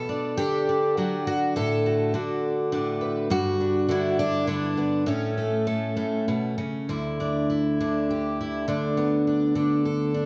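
Close, detailed microphones capture a picked twelve-string acoustic guitar set up front in a moderate recital-hall reverb, with a 1.5-second decay that gives the strings an auditorium glow. This is a brief solo folk fingerstyle passage in D major, tuned to A4 = 441 Hz, moving in a rubato 6/8 at about 68 beats per minute counted in dotted quarters. The fresh strings sound shimmering and octave-doubled, ranging from D2 up to B4 and carrying a warm, nostalgic mood. The harmony moves through Bm, D6/A, G and A, then shifts at 6.9 seconds to Dsus2 and Bm/D. The guitar plays alone from the start to 10.3 seconds, where this fragment of a longer piece is cut off.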